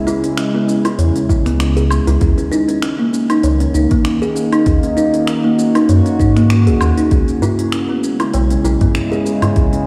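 A swung 98 BPM groove in 4/4 sets an unhurried organic downtempo pace, with finger snaps, smooth hi-hat, shaker and woodblock from an overdriven electronic kit sitting low in the mix from just after the start. A round, sine-like sub bass arrives at 1.0 seconds, up front and deep with tube saturation, and a soft, overdriven electronic kick joins at 1.3 seconds. Over this, a woody, thumb-plucked kalimba plays short arpeggios through a digital delay, its boxy small-room tone placed close to the listener. Beneath it, a dark, warbling tape-like pad holds sustained chords in C# dorian, its detuned sawtooth and triangle layers colored by chorus, 12-bit sampler grit and sidechain pumping, moving from C#m to D#m7 and settling on C#m7. A low-tuned, ringing tabla, close and dry, enters at 7.4 seconds. The mood is warm and earthy, and the whole excerpt sits in a lush hall reverb heard through a big sound system in a bare stone room.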